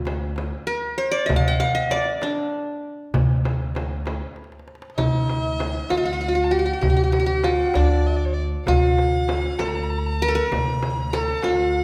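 Stately and warm, this Arabic maqam ensemble piece moves at 65 BPM in a straight 6/8, in D maqam huzam, heard as a cut from a longer work. A bright, fingerpicked qanun with triple strings carries the melody up front over a woody pizzicato upright bass on steel strings, joined by a close, dry clay darbuka sitting in the background and a small, compressed, saturated frame drum played with soft hands. After a drum fill from 4.4 to 5.0 seconds, a single bowed violin with light vibrato and a smooth top enters at 5.0 seconds as a second line, all set in the wet reverb of a recital hall.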